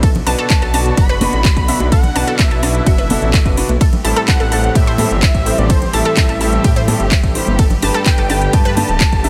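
Progressive house at 127 BPM in A dorian, this driving, expansive cut moves through Bm, Am7 and Gadd9 with a steady, straight 4/4 pulse. An overdriven, punchy electronic kick sits up front, joined by a house kit of handclaps, metallic hats and ride cymbal that was re-recorded in a large room, while bright, hard-hand congas enter at 0.2 seconds in the background. A dark detuned saw bass rumbles and beats low with tube saturation, and a round analog pluck spins chorused arpeggios through dub echo until 8.7 seconds. A clear baby grand piano adds stabs with its own dub echo, and a thick, nasal unison lead with a sub octave carries a warbling, vibrato-laden melody through delay from 0.5 seconds. Behind them, a smooth bowed studio string section holds sustained chords, and the strings, bass, pluck, piano, lead, congas and kit pieces all pump to the sidechain in a dry, loud mix.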